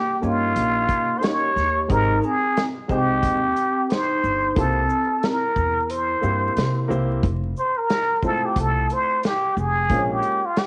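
This jazz-hop cut, taken from a longer piece, rides a relaxed 90 BPM groove in 4/4 with a swung sixteenth-note feel, its mood both warm and cool, and its tuning sitting a touch low at A4 = 438 Hz. Up front, a trumpet with a plunger mute carries the melody with a breathy, raspy, growling tone, wah-wah colour, vibrato and scooped notes, yet a roomy, distant air. A vibraphone played with soft mallets adds a ringing, airy second line with slow motor vibrato until 6.9 s, while a dark baby grand piano supplies mellow accompaniment. An upright bass gives woody, thumpy pizzicato on gut strings, and a vintage acoustic kit of smooth hi-hat, shaker, medium-tuned snare and tight kick holds the beat, with the kick dropping out between 5.9 and 7.2 s. The harmony moves through Eb7, Abmaj7 and C7 before the trumpet takes a solo at 7.2 s over Fmaj7 and Bbm7. An echo chamber and small room reverb, vinyl crackle and a rolled-off top end give the sound a dusty, vintage haze.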